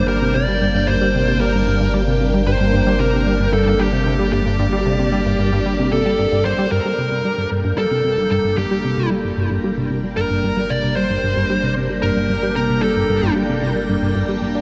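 Cosmic and expansive, this cut from a longer piece of ambient, sequencer-driven space music moves at 113 BPM in a straight 4/4, resting on a G minor chord. A punchy, funky analog bass riff with a fast attack and decaying notes drives the groove, shaped by filter sweeps and touched with subtle chorus and delay. A bright, warbling string machine holds sustained chords, swirling through ensemble chorus and a phaser with slow attacks and a long release, while a deep, round sine sub bass sits beneath and fades in from 6.7 s. Up front, a dark, distorted fuzz lead guitar carries the picked melody through delay until 13.3 s. At 7.6 s a very quiet, bubbling texture of resonant, randomly stepping filter tones appears high above the mix. A wet cathedral reverb places the whole piece in a vast, echoing space.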